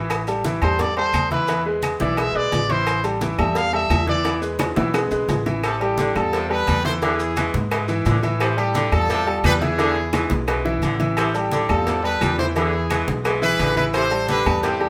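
A straight 4/4 salsa groove at 173 BPM drives this danceable, passionate cut from a longer piece in A minor. Thick-skinned, low-tuned congas, round bongos with cowbell, ringing metal-shell agogo bells and timbales and grainy maracas all sit in the background, while very quiet, dry claves click close by. An upright bass plays thumpy pizzicato on gut strings beneath a polished concert grand piano that stays up front with deep bass and short sustain. A distant but forceful trumpet solo enters at 0.6 seconds and plays until 4.4 seconds, clear and punchy, with vibrato and scooped notes. After a drum fill, a tight, brilliant horn section takes the melody up front at 5.6 seconds, a vintage-toned saxophone section adds a lower second line over chords that move between A minor sevenths and ninths and E7, and a moderate large studio reverb gives the ensemble a spacious finish.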